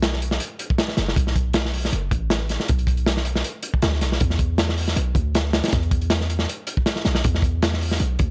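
A crunchy breakbeat kit of hi-hat, tight kick and medium-tuned snare sits up front with a saturated, gritty, mid-forward character and rolled-off top, driving this frenetic, atmospheric drum and bass and jungle excerpt at 158 BPM in 4/4 with a light 16th-note swing. Beneath it, a deep, boomy 808-style bass with a sine tone, noise layer, fast attack and decaying notes moves between F#1 and E2, colored by tube saturation. The dry hardware recording, dusted with vinyl crackle, runs the full 8.3 seconds in a single section.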